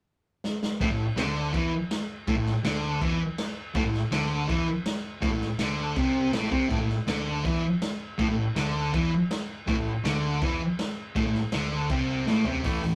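Rowdy and raw, this garage rock excerpt charges along at 162 BPM in a straight 4/4, opening with a quick drum fill on the gritty, saturated kit, whose punchy kick and medium-tuned snare sit up front alongside crash, hi-hat and toms. At 0.8 seconds a thick, double-tracked fuzz guitar riff lands on A5, bright and distorted at the front of the mix, while an overdriven picked bass growls in the background. The rough rehearsal-room sound carries tube saturation and a moderate reverb, and another drum fill arrives near 12.3 seconds before the cut.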